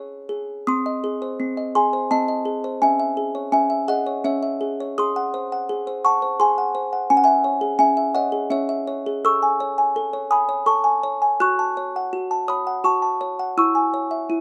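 A solo music box carries this brief classical lullaby, its delicate, tinkling plucked tones coming from a large box that sits up front with a mid-forward character. The mood is wistful and fragile, set in C# minor in 3/4 at 84 BPM, played with a rubato feel that lets the time breathe. A single C#5 sounds at the very start before the harmony begins at 0.7 seconds on G#/B#, then moves through C# minor, G#7, C# minor again, Amaj7 and F# minor before settling on C#m/E near 13.6 seconds. The music box spans a range from B#3 up to F#6, giving its voice both a low cushion and glinting upper notes. Close, detailed microphones and light reverb keep every note intimate, and the passage is cut from a longer piece, ending at 14.4 seconds.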